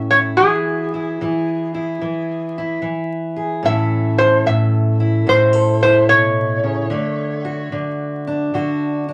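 Acoustic country blues with a swaggering, rollicking mood, this short excerpt moves at 74 BPM in 4/4 with a swung eighth-note feel in A major. A full-bodied dreadnought steel-string acoustic guitar, fingerpicked with audible finger squeak, carries the accompaniment from the start to 9.1 seconds, ranging from A2 to A4. Over it, a metal-body resonator slide guitar played with fingerpicks takes the melody between G#4 and E5, its tone nasal and metallic, and it sits slightly louder than the accompaniment. At 3.6 seconds the resonator moves into a solo played with a steel bar, as the harmony shifts from E to A and later on to D. Both guitars are placed up front in a studio ambience with a short reverberation, and a layer of vinyl crackle lends the recording an aged surface.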